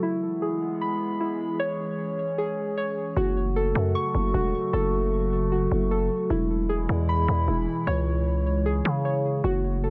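A warbly, nostalgic tape-like pad holds detuned chords while muted, felt-like synth keys play intimate arpeggios through a filter sweep that opens this dark, eerie half-time hip hop excerpt at 153 BPM in F# minor, and at 3.2 seconds a growling, buzzy 808-style bass enters up front as the chords move from E and C#m to F#m, all set in a light reverb.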